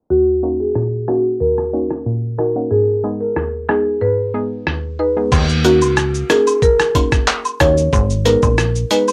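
Muffled, tape-worn and dry, this bouncy, tough dancehall excerpt in Eb minor at 92 BPM opens with a woody marimba melody over a soft, round, chorused pluck with sidechain pumping while a filter sweep runs until 5.3 seconds, as a compressed, pitched-down, overdriven sampler-style drum kit with a thumpy kick, handclaps, hi-hat, rim click, shaker and crash sits up front from 0.8 seconds, joined at 5.3 seconds by a punchy, funky analog bass and by woodblock and cabasa in the background, all over alternating Ebm7 and Abm chords.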